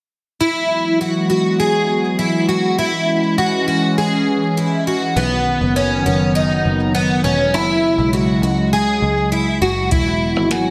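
A bright, shimmering twelve-string acoustic guitar sits up front, picking arpeggios with audible finger squeak through ensemble chorus and tape echo in this floating, dreamy dream pop excerpt in E major at 101 BPM. Beneath it, a hollow, flute-like pad with a slow attack and chorus holds sustained chords through Eadd9, C#m, B and F#sus2 before returning to Eadd9. A round, foam-muted electric bass enters at 5.2 seconds, adding a direct low foundation. At 9.9 seconds a soft vintage rhythm box comes in with a deep kick, a tonal snare and metallic hats, and a ringing concert harp note appears at 10.5 seconds just as the passage is cut off. A wet scoring stage reverb with a two-second tail bathes the whole sound in a spacious, misty haze.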